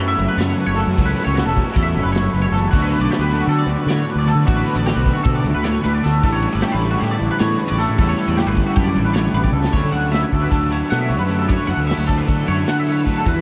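A fuzzy, overdriven fingered bass sits up front in this bright, wistful math rock and midwest emo excerpt, moving in 9/8 at 308 BPM (counted in eighths) in D major. Around it, a scooped, twangy electric guitar plays high arpeggios through analog chorus, a clean twelve-string electric guitar adds background accompaniment, and a double-tracked crunchy overdriven guitar carries a riff with subtle chorus, over a studio drum kit with a punchy kick and medium-tuned snare. The harmony moves through F#m7, D6 and A7sus4 until a drum fill at 9.4 s leads into a Dmaj9 passage at 9.7 s, with the mix soaked in huge ambient reverb and a dreamy cassette-tape haze.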